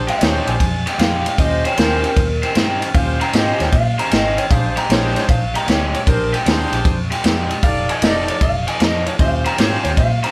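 A swung 154 BPM electric blues shuffle in Bb mixolydian, gritty and soulful, drives on punchy, up-front vintage drums with kick, snare and ride, a dark, round muted bass, a bright overdriven stack guitar riff, a twangy, slightly broken-up second guitar line and loose, clear horn stabs with light vibrato, moving through Bb13, Eb13 and F13 in a live, moderately reverberant room, while a clean electric guitar solos across the whole 10.3-second excerpt cut from a longer piece.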